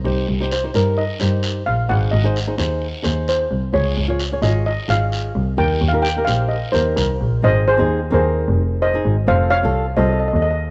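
A metallic, shimmering double-seconds steel pan played with hard rubber sticks leads this sunny, carefree calypso excerpt in Ab major at 130 BPM, taking a solo from 0.0 to 7.4 seconds with a boxy small-room tone set up front. Beneath it, a dark, fingerpicked flamenco guitar and a bright, intense bowed double bass with vibrato fill out the harmony, the bass sounding distant yet up front, while a raspy guiro scrapes until 7.1 seconds. The whole excerpt sits in moderate plate reverb and carries the worn, warbling pitch drift of old cassette tape, moving from Cm7 through Ab, Db and Eb6 before shifting to Abadd9 at 7.4 seconds and F7 at 9.3 seconds.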